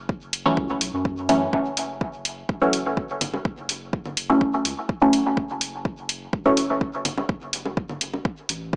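A straight 4/4 pulse at 125 BPM drives this nocturnal, meditative dub techno excerpt in F# minor, built on an overdriven, deep electronic kick and an up-front analog hi-hat, with a soft, round sub bass pumping beneath on a single F#m7 chord. Muted, detuned chord stabs with a filter pluck arrive at 0.5 seconds, treated with phaser and dub echo, and layered, overdriven congas and bongos join at 3.2 seconds with their own pumping and echo. A moderate digital room and a dry, gritty hardware sound give it a small-speaker character.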